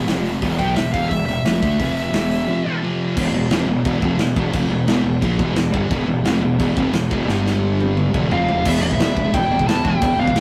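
A straight 4/4 pulse at 175 BPM drives this heavy, epic heavy metal excerpt in E phrygian, where an up-front acoustic kit with a tight kick and medium-tuned snare pounds beneath a growly, punchy fuzz bass and two sludgy overdriven rhythm guitars, one warm in the background and the other dark and very quiet, churning a riff around F5 and E5 power chords before settling on Em at 3.2 seconds. A high-gain lead guitar with delay sings a high melody from 0.6 seconds, returning at 8.3 seconds alongside a brighter, distorted second lead line tucked in the background, as a drum fill that starts at 7.3 seconds winds down. The whole has the rough, saturated feel of a rehearsal-room take in a small, moderately reverberant space.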